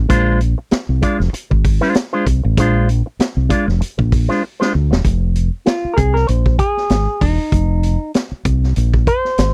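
A dark, round fingered bass opens this sly, hypnotic funk excerpt at 0.0 seconds. It is joined at once by a bright, twangy electric guitar through an envelope filter and a punchy vintage kit with a high-tuned snare and a rolled-off top, grooving at 97 BPM in F dorian with a light 16th-note swing over a Bb9 chord. A drum fill at 4.4 seconds leads to a shift to Fm7 at 5.1 seconds, where the guitar takes a clean, picked solo, all captured in a dry, close, 1970s-style studio sound with the parts up front.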